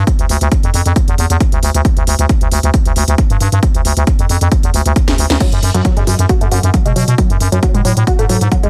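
A growling, thick FM bass sits up front with sidechain pumping, driving this intense, hypnotic peak-time techno alongside a heavy electronic kick, both drum parts overdriven and set in a small room. A layered techno drum kit adds a cracking snare, smooth hats and crash cymbal, with pumping on the hats and cymbals. After a drum fill at 5.1 seconds, a round, nasal, detuned sawtooth pluck enters at 5.4 seconds, colored by chorus, phaser and tape echo, in a largely dry mix cut from a longer piece.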